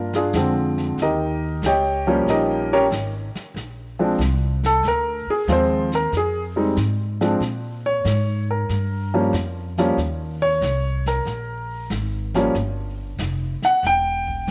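A worn, deep-voiced concert grand piano carries the melody as a solo over woody pizzicato upright bass from the first moment, with brushed drums, a boomy kick and hi-hat entering at 0.1 seconds, in this sophisticated, playful swung jazz piano trio passage at 93 BPM in 4/4 that moves through Bb7, Eb7, Fm and Absus24 harmonies before landing on Em, with piano and bass up front in a moderate spring reverb and studio ambience.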